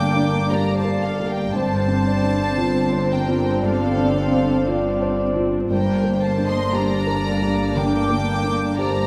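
Cinematic and bittersweet, this slow, rubato excerpt in G minor moves from Gm to Dm7/G at 1.5 seconds and back to Gm at 5.7 seconds, with a soft-attack, sul tasto violin section carrying the floating melody over a clear second violin line and a mellow, distant clarinet. A felt-muted upright piano with audible action noise and thick felt sits intimately beside dark, woody violas, while a French horn section holds clear sustained chords with light vibrato in the background. Rich cellos and a warm double bass section anchor the bass, all heard from further back in a wet scoring stage.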